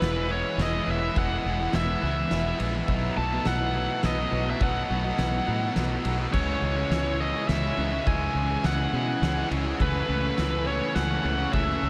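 A straight 3/4 pulse at 104 BPM drives this cinematic, euphoric post-rock passage in E major, cut from a longer piece and moving through E, B7sus4, C#madd9 and Amaj7/C#. An oversized low-tuned acoustic drum kit sits in the background with dark cymbals, a fat snare and a punchy kick, playing until 11.7 s, while a round, foam-muted fingered electric bass sits up front. Two picked fuzz guitars carry the riff, one thick, the other compressed and set further back, both bright with distortion. A twelve-string electric guitar picks very quiet, clean arpeggios beneath a ringing, bell-like glockenspiel struck with soft plastic mallets and washed in tape echo. Up front, a biting lead guitar sings the melody with overdrive and tape echo over a swirling, detuned sawtooth pad phased and chorused into a very quiet, slow-blooming haze. A huge ambient reverb soaks the mix in a dreamy glow.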